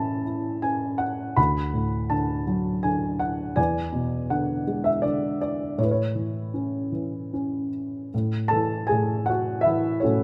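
A dark, woody upright piano plays alone from the start, up front with short sustain in a moderate recital-hall reverb, offering a calm, peaceful classical fragment in a rubato three-four lilt that moves through Aadd9, D, E7 and back to A before a new section begins at 8.1 seconds and the recording cuts off at 10.2 seconds.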